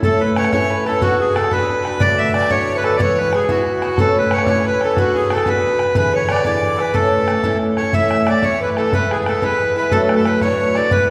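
A reedy, up-front accordion carries the melody of this bright, rollicking Celtic jig in 6/8, joined from the start by a biting bowed fiddle and a ringing fingerpicked harp in the background, a woody, boxy picked acoustic guitar with old strings, and a tight, damped bodhran, the whole ensemble sitting in a wet church reverb.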